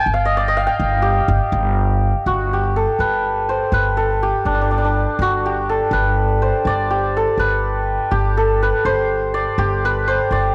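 A steady 6/8 pulse at 82 BPM (dotted quarters) carries this hypnotic, melancholic Persian modal ensemble piece in G dastgah mahur, cut from a longer performance that shifts into a new section at 2.3 s. Up front, a bright, shimmering hammered santur carries the melody between D4 and G5, and from 0.1 s an upright bass, plucked on gut strings, anchors a dark, woody, thumpy G1. A light small-room reverb and the intimate grain of a home cassette recording frame the duo.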